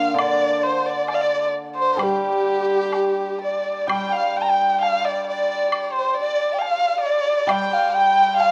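Graceful and wistful, this short excerpt of Chinese traditional chamber music moves at a rubato 62-69 BPM in 2/4, in the G yu mode. A mellow, hollow large dizi carries the melody with a buzzing membrane and crisp attack, while a dark, nasal erhu sits up front on a second line with vibrato and portamento, over shimmering, ringing hammered dulcimer accompaniment. A close, dry woodblock enters at 0.2 seconds, and a moderate recital hall reverb surrounds the ensemble as the music passes into a new section at 3.9 seconds.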